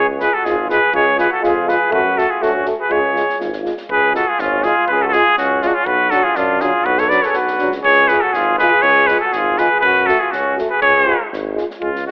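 A muted cornet opens this bittersweet, virtuosic Balkan brass band fragment, its nasal tone placed up front and carrying the melody in a poised classical style over a soft attack. Alongside it from the first moment, a warm flugelhorn sings a distant second line, while two euphoniums fill in the accompaniment from the background: one clear, the other roomy with a light vibrato. A mellow tuba anchors the bass with a smooth top, and from 0.2 seconds a compact cocktail drum kit adds dry kick and high-tuned snare, kept well behind the horns. In a steady 2/4 folk pulse, the harmony circles between C# and F#m, and when the phrase repeats from 3.9 seconds it takes a turn to Bm. The flugelhorn drops out at 11.3 seconds, leaving the rest of the band to close this cut from a longer piece. The whole band sits in moderate scoring stage reverb, filtered to a thin telephone sound.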